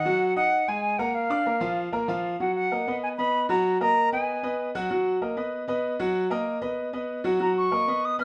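A moderate large-studio reverb gives this short cut from a longer Latin piece a sense of open space, with both instruments sitting up front. At a driving, danceable 192 BPM in straight 4/4 and Eb minor, a bright concert grand piano carries the accompaniment for the full 8.2 seconds, its brilliant treble and deep bass ringing with long sustain across a span from F3 to Eb6. A silver concert flute sings the melody between F5 and F6, pure and metallic in tone, with vibrato, a crisp attack and an expressive, distant quality. The flute plays from the start until 4.7 seconds, drops out while the piano continues alone, and returns at 7.4 seconds. The harmony opens on Ab5 and Bb before the second section at 2.4 seconds settles into a restless alternation of Ebm with Abm, a rootless Abm9 and B.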